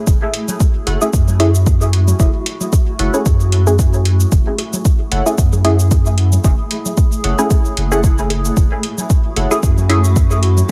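Dub techno at 113 BPM in F# minor with a 16th-note swing, this cavernous, hypnotic excerpt rests on a single F#m7 chord as an overdriven, up-front kick anchors a round, deep sub bass that pumps beneath muted sawtooth chord stabs trailing dub echo, a blurred, evolving granular pad, tape-warmed shakers and metallic hi-hats, background congas and bongos, and warbling lo-fi synth keys that enter at 0.9 seconds, all set in a digital ambience.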